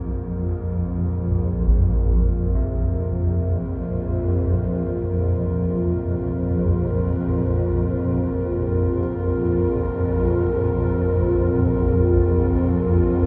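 Soaked in a huge, dreamy reverb with a long 8.3-second tail and dulled highs, this cut from a longer dark ambient drone piece drifts in free time over a Bbsus2 chord, ominous and desolate. A swarming, detuned granular drone sits up front in the low register under a filter sweep, alongside a deep, moody analog pad of sustained chords with chorus and ring-modulated grit. In the background, a clear, intimate grand piano fades in with arpeggios, its action noise audible, while a single muffled concert bass drum hit lands at 1.7 s.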